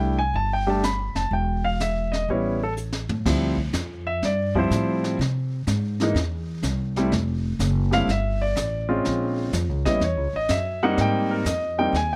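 Playful and sophisticated, this jazz piano trio excerpt swings at 124 BPM in 4/4, with a relaxed lilt on the eighth notes. A grand piano carries the melody from the start, its intimate tone up front, with long sustain and the audible noise of its action giving it a natural presence. Beside it, a pizzicato upright bass with steel strings sounds woody and close, anchoring the low end throughout. A brush kit joins at 0.4 seconds, dark and smooth, with dusky cymbals, a high-tuned snare and a boomy kick, and it plays a fill from 2.8 to 3.3 seconds that leads into the second section. The harmony moves through rich, shifting colours, from Csus2 and Em through Dm11, Caug and Fmaj7 to Bbm9 and a closing Abmaj9, all captured dry with close, detailed microphones.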